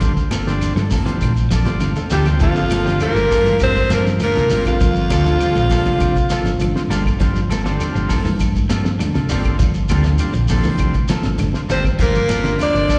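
This short cut from a longer afrobeat piece opens with the full rhythm section already moving: a buzzy, vintage combo organ comping on a Gm11 chord with plate reverb and slapback echo, a slightly broken-up electric guitar picking low arpeggios through tape echo, and a round, punchy hollow-body bass anchoring the bottom. Behind them sits a cloth-damped drum kit with a fat snare, tight kick and rolled-off top, while high-tuned congas, a grainy shekere and woody claves fill out the percussion quietly. A dark, clean semi-hollow guitar adds fingered stabs from 0.3 seconds, and the organ and drums both play fills leading into the main groove. At 2.1 seconds a horn section enters, led by a raspy, close-miked alto saxophone up front, with a growling tenor and a breathy baritone playing second lines further back. The horns drop out at 6.9 seconds, leaving the defiant, intense groove to simmer before they return at 11.7 seconds. 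Heard as a live gig through the venue's PA, the band carries a light recital-hall reverb.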